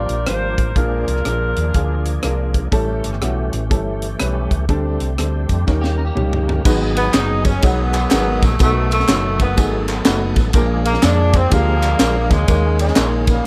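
A swung eighth-note groove at 123 BPM in 4/4 drives this short, soulful slice of uptempo gospel, settling into G# minor from 6.7 s. A tight funk drum kit with a high-tuned snare and tight kick sits up front beside a round, dark hollow-body bass played with the fingers, while a woody, slightly detuned upright piano comps throughout. An overdriven tonewheel organ holds gritty, thick chords in the background, colored by a fast rotary speaker and chorus vibrato. A mellow saxophone section carries the melody with soft attacks and vibrato, dropping out after 2.6 s before returning at 7.0 s with dub echo trailing its phrases. A drum fill and a brief, bright clean guitar line with ensemble chorus and echo lead into the fervent second half, where distant tambourine, egg shaker and group handclaps join the groove in a dry, echo-heavy mix.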